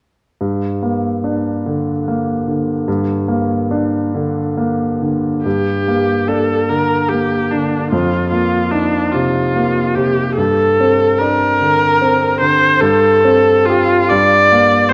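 A clear concert grand piano opens this hazy, wistful impressionist excerpt at 0.4 s, setting out a deep-bassed, natural-sounding accompaniment in G minor at a slow, rubato 6/8 of 44-51 BPM (dotted quarters). At 5.5 s a single bowed viola enters up front with the melody, its tone rich and focused with vibrato and a smooth top, as the harmony drifts from Gm through F7sus4, Gmadd9 and Fadd9/G before settling back on Gm at 14.1 s. A moderate concert hall reverb surrounds the duo, while the worn cassette tape lends the recording a warbly pitch drift.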